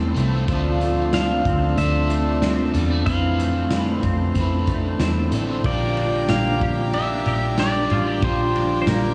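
A straight 4/4 pulse at 93 BPM carries this short, dreamy dream pop passage, with a raw garage drum kit entering at 0.2 seconds: a punchy kick, a medium-tuned snare, hi-hat, ride, crash and tambourine sit dark and smooth in a bright stone room with a rolled-off top and a touch of tape echo. Underneath, a vintage foam-muted fingered electric bass sits round and up front. An overdriven, compressed electric guitar plays picked accompaniment through harmonic tremolo, subtle chorus and tape echo, while a close-miked, reedy hand-pumped harmonium breathes full, dry sustained chords. Further back, a scooped, twangy clean electric guitar picks arpeggios bathed in ensemble chorus and echo. From 1.1 seconds a pedal steel guitar floats the melody high above with fingerpicked slides and volume swells. The harmony drifts from Dm7 to Fmaj7 and settles on Bb6 as a second section begins at 5.6 seconds, all wrapped in a moderate spring reverb and an echo-heavy mix.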